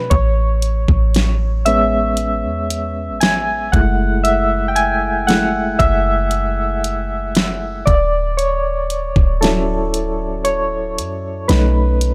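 Romantic and tender, this contemporary R&B fragment is carried by soft, round electric-piano-like synth keys, mellow and up front with chorus and tremolo, featured throughout as they move from Amaj7 through F#m7 and Dmaj7 to B7. Underneath, a clean 808-style bass sits deep and boomy with a dark, decaying sine tone. A smooth, electronic R&B kit adds a knocking kick, fat snare and warm hats, captured close in a small room with little reverb.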